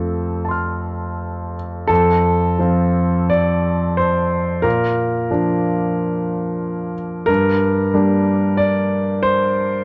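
A clear concert grand piano, up front with audible action noise, deep bass and long sustain, plays solo through this tender, intimate neoclassical minimalist passage in F major, moving with rubato at 80-96 BPM in 4/4 over F, Bb and G minor chords, set in light reverb with a dark production.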